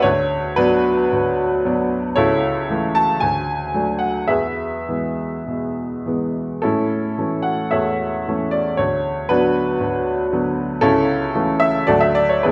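A clear, woody upright piano carries this romantic character piece alone, its worn and slightly detuned tone sitting up front with a long, ringing sustain. The playing is passionate and hopeful, moving with a free rubato feel in 4/4 at a tempo that drifts between 98 and 119 BPM. In A major and tuned to A4 = 439 Hz, the harmony moves from Bm/D through A/C#, D and E, settles on A at 6.6 seconds, then returns to Bm/D at 8.8 seconds and passes through A/C# before closing on D. The piano spans from C#2 up to A5, filling the register from deep bass to an upper line. A wet recital hall reverb with a 1.6-second decay surrounds the instrument, giving this brief fragment of a longer piece a sense of space across its 12.5 seconds.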